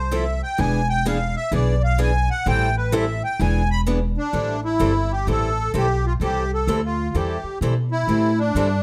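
Lightly reverberant, this short cut from a longer piece of acoustic string swing in the jazz manouche style feels fiery yet bittersweet, moving at 128 BPM in 4/4 with a swung eighth-note lilt in A minor. The reedy, sweet accordion carries the melody up front, its light tremolo tuning adding a gentle shimmer, and it takes a solo through the first section before the second begins at 4.3 seconds. Beneath it, the upright bass sits equally forward, plucked pizzicato on steel strings with a thumpy, woody tone that anchors the low end. The picked acoustic archtop guitar, warm and woody with old strings, fills in the accompaniment from 0.1 seconds, sitting a little further back in the blend. The harmony moves from Fmaj7 to E7, settles on Am7, returns briefly to E7 and lands on Am7 again as the second section opens.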